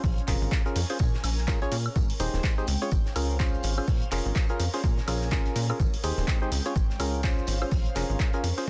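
A punchy analog kick sits up front through this soulful, energetic piano house fragment, pushing a lightly swung groove from start to finish. Beneath it, a funky, plucky bass built from sawtooth and square waves snaps in with a fast attack and then decays, thickened by tube saturation and pumping against the kick. A hollow, mellow organ stab carries the riff with chorus and dub echo, cycling through Bbm7, Abmaj7 and Dbmaj7. An electronic drum machine adds handclaps, hi-hat, shaker and woodblock, while an acoustic kit of hi-hat, snare and tambourine stays in the background, thinned by high-pass filtering and breathing with sidechain pumping on its hats and percussion. An airy, breathy pad with slow attack and long release drifts behind it all through chorus and phaser, in a small room ambience under a dense, heavily limited modern master.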